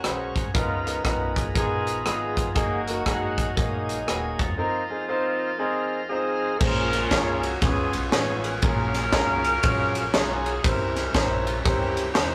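Uptempo gospel at 119 BPM in a swung 4/4, soulful and solemn, cut from a longer piece. A dark, vintage saxophone section with light vibrato carries the melody over a clear, intimate baby grand piano with audible action noise, while a crisp fusion drum kit with a high-tuned snare and a tight kick sits up front and a woody pizzicato upright bass enters at 0.1 s. In the background an overdriven, gritty tonewheel organ holds sustained chords through a fast rotary speaker and plays a fill at 5.8 s before the second section begins at 6.6 s, all captured in a rough rehearsal-room sound with tube saturation and wet reverb as the harmony moves from Ab9sus4 through Bbm9 to C7b9.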